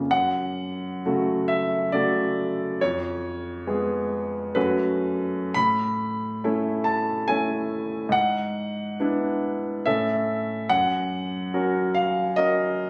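A bittersweet, passionate romantic character piece for solo piano in F# minor, this excerpt cut from a longer work moves in a rubato 3/4 at 58-73 BPM, its smooth, vintage-toned grand piano sitting up front and spanning F2 to B5 through chords from F#m to A and E7/G#, all heard as if captured on a phone in a recital hall with moderate reverb of 1.7 s and club reverb.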